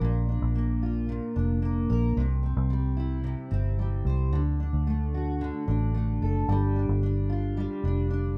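Acoustic pop in C mixolydian at 111 BPM, this easy-going, carefree excerpt pairs a full-bodied, double-tracked fingerpicked steel-string dreadnought guitar with a dark, round, foam-muted vintage electric bass sitting up front, moving through Bb, C, D and G7(no3) in a small-room ambience with a rough home-demo feel.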